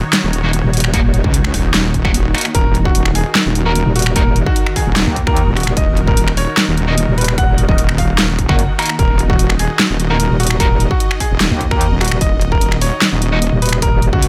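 Up front, a heavy, saturated wobble bass in Eb minor is joined at 0.6 s by a metallic FM wobble bass, both thickened with chorus and overdrive, driving this aggressive half-time dubstep excerpt at 149 BPM over an electronic kit of huge snare, bright hats, finger snaps and handclaps with a distorted, tape-warm kick. Behind them a lush supersaw pad holds sustained chords through a phaser with sidechain pumping, while a double-tracked fuzz guitar fires bright, distorted stabs treated with dub echo. From 2.5 s a clear grand piano carries the melody, its notes trailing dub echo in a dry, close mix.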